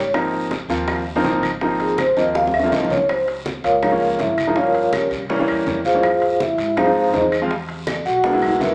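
Bongos, congas, claves, guiro and timbales drive a straight 4/4 groove at 163 BPM in this lively, sunny Afro-Cuban jazz excerpt in Ab major, cut from a longer piece. Most of the percussion sits in the background: tight, high-tuned bongos struck with hard hands; bright, low-tuned congas; woody, distant claves; and ringing, vintage-sounding metal-shell timbales. A raspy guiro joins them, with drum fills at 2.4 s and 7.9 s. Up front, a vibraphone with soft mallets solos throughout, its mellow, metallic tone shimmering with fast motor vibrato. A natural-sounding concert grand piano with deep bass supports it, moving from Ab69 to Db6, then through Gm7b5, C7b9 and Fm7 to E(#11). Underneath, a pizzicato upright bass with steel strings adds a dark, thumpy pulse, and light reverb gives the whole a gentle sense of space.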